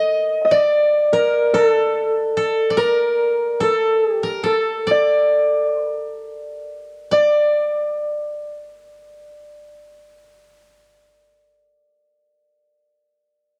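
A Celtic harp and a koto begin together in this austere, calm fragment of Japanese traditional music, cut from a longer piece. It moves in a rubato 2/4 between 45 and 74 BPM, tuned to A4 = 444 Hz. The thumb-plucked acoustic harp carries the melody up front with a bright, ringing tone. The koto plays a second line, picked with fingerpicks, dry and woody and set lower in the balance. Both parts share the same range and carry a cassette tape coloring. The music slows from 3.2 s to 7.1 s, where a new section begins, and the home cassette recording sits in a moderate studio reverb.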